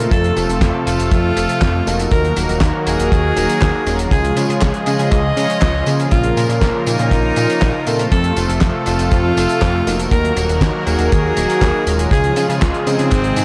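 A dry, gritty hardware recording with light reverb and a small-room feel opens this melodramatic, bittersweet slice of italo disco, cut from a longer piece and moving at 120 BPM in a straight 4/4. A smooth, detuned sawtooth pad with chorus holds sustained chords from the start, while brassy, bold synth brass stabs with chorus and vibrato sit in the background. Underneath, a fat, nasal analog bass with tube saturation and a plucky filter drives the low end, paired with a tight, dark kick drum. The damped 70s kit adds a fat snare, hi-hat, handclaps and tambourine, all with a rolled-off top and studio ambience. Over the top, an edgy alto saxophone carries the pop-style solo melody with light vibrato and analog delay, as the chords cycle through F, Ebm, Db and Bbm.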